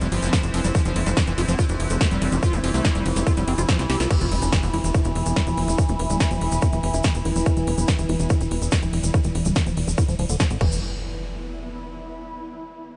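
This excerpt from a psychedelic trance track opens on a drop at 143 BPM in straight 4/4, with a tight, punchy sequencer bass built from sawtooth and square waves with ring modulation and tube saturation driving up front, joined by a layered electronic kick from 0.3 seconds. Around them sit a big-room dance kit with a punchy snare, metallic hats, crash and ride, a grainy, bright egg shaker, and a squelchy, resonant acid bass riff treated with chorus, sidechain pumping and tape echo, set in the background. A detuned drone of moving overtones holds sustained chords, pumping against the kick, while a blurred, evolving granular pad floats behind in a cloud of its own reverb. A nasal, wobbling vowel-sweep bass is barely audible between 1.5 and 3.3 seconds, and a drum fill at 3.8 seconds leads into the next passage, where an electronic impact lands at 4.1 seconds, the pad fades out, and filter sweeps move through the sequencer bass, acid bass and drone. 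The mood is alien and psychedelic, the whole dreamy mix soaked in a huge ambient reverb with highs rolled off above 10.3 kHz, and a final impact at 10.6 seconds rings out alongside the granular pad's tail.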